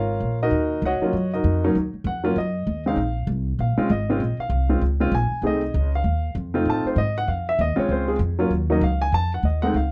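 Dark production with light reverb frames this smoky, moody swinging jazz excerpt, where an intimate, natural-sounding baby grand piano, its action noise audible up front, carries the melody over a woody, thumpy pizzicato upright bass on steel strings through chords such as Bbm7, Ebm7 and F7#9.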